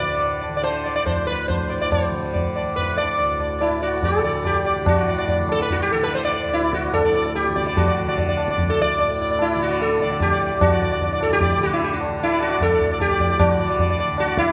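A plectrum-plucked sitar sits up front in this devotional, serene Hindustani piece, its buzzing tone and sympathetic strings carrying the melody in raga khamaj across a span from E4 to D5. Beneath it, a softly plucked tanpura holds a low, shimmering drone from D2 to D3 at a lower level, present from the very start. High-tuned tabla joins at 0.2 s with a close, dry sound and a short ring, marking a seven-beat cycle of uneven beats. The music gathers pace steadily from beginning to end, and a new section opens at 4.9 s. A recital hall's reverb lends the whole ensemble a sense of distance, as if heard from further back in the room, in this passage cut from a longer performance.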